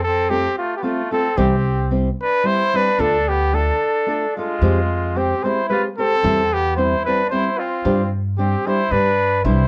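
A warm trumpet opens the excerpt with the melody at once, its light vibrato, soft attack and smooth top carrying a festive, romantic mariachi tune in 3/4 at 111 BPM with a gentle swing, up front in the mix. Beneath it, a clear trumpet plays a second line in a lower register, sounding distant and roomy in a classical style, while a pizzicato upright bass anchors the harmony with a woody, growly tone from the start. A fingerpicked nylon-string guitar joins at 0.3 seconds, full-bodied and deep in a classical manner, filling out the accompaniment across a range from C3 to C5. The chords move from F through C and D minor to an F minor add9 colour, then C over E, settling on G suspended and G to close the passage in C major. The whole piece sits in a modest small room and is coloured by worn cassette tape with a warbling pitch drift, giving it the feel of an old recording cut from a longer performance.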